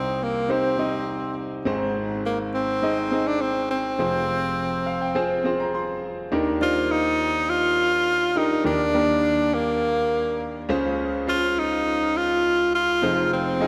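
Dramatic and urgent, this short pop cut from a longer piece moves at 103 BPM in a straight 4/4, tuned slightly sharp to A4 = 443 Hz. A punchy tenor saxophone, sitting up front as the solo voice, carries the melody within a range of Bb3 to F4 with a light vibrato, its pop-style tone trailed by tape echo. Beneath it, a smooth, vintage-sounding concert grand piano provides accompaniment across a broad span from F1 to C6, its deep bass giving the harmony weight while staying clear and close. The harmony shifts through Cm, Ab and Fm before moving into a second section at 6.3 seconds built on Ebmaj7, Dbmaj7 and Fm7. Just before that change, the piano plays a fill from 4.6 seconds, and both instruments sound throughout within a wet concert hall reverb.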